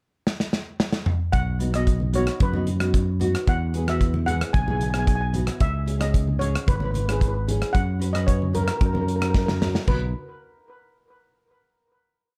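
A drum fill on an up-front acoustic kit with dark cymbals and a punchy kick opens this short, sunny, bouncy calypso piece, and at 1.3 seconds a shimmering steel pan enters with motif-based song phrases in double seconds, played with medium rubber sticks and washed in plate reverb and tape echo, over a bright fingered electric bass playing a two-feel root-and-fifth line; a double-tracked classical nylon-string guitar joins moments later, fingerpicking triad chords with audible finger squeak, followed by very quiet, distant low-tuned congas, before a second drum fill leads into the final chord.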